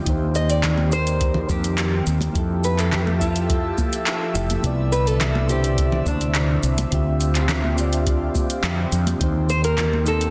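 A soft, rounded electric-piano-like synth and an airy, breathy pad open this smooth, blissful sunset chillout excerpt together, the keys shimmering with chorus and digital delay while the pad drifts under chorus and phaser with a slow attack and long release. At 105 BPM in a straight 4/4, a dark, round fretless bass sits up front alongside a deep analog electronic kick and a layered deep house kit of handclaps, shaker and metallic, overdriven hi-hats that carry a large-room sheen. From 0.4 seconds a small, fingerpicked nylon-string guitar takes the melody, its dusky tone roughened by vintage 12-bit sampler grit and trailed by tape echo. Damped, high-tuned congas with a thick-skinned, warm character tap along in the background from 0.6 seconds. The harmony moves through Eb6, Fmaj9, Cmaj9 and Dm11 before returning to Eb6, all under light reverb and a dense, heavily limited modern master.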